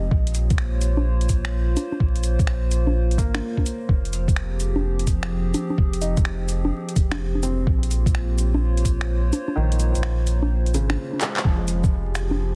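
A swung 4/4 groove at 127 BPM drives this ghostly, rainy future garage piece, built on a muffled, thumpy, pitched-down kick and a layered electronic garage kit of bongos, cabasa, finger snaps, handclaps and metallic hi-hats, with a softly clipped snare. A round sine sub bass and a warbling, detuned, lo-fi pad with chorus and reverb pump together with a clear, woody upright piano and its tape echo, moving between Bbm7 and Fm7 in a tuning just under standard pitch. The kick drops out at 9.6 seconds, a drum fill arrives at 11.2 seconds, and vinyl crackle sits over a dense, heavily limited master.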